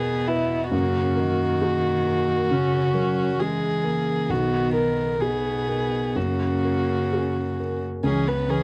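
A dry, close recording in a 1970s studio style, with a touch of reverb, frames this intimate, tender cut from a longer neoclassical piece for piano and strings, played with rubato in 4/4. A dark, up-front solo violin carries the melody with light vibrato and an airy sul tasto bow, while a warm cello sings a second line beneath it and a rich viola fills in the accompaniment. A felt-muted upright piano, soft and mellow, supports the strings as the harmony moves from E through F# and Bmaj7 before reaching C#m7 at 8.0 seconds.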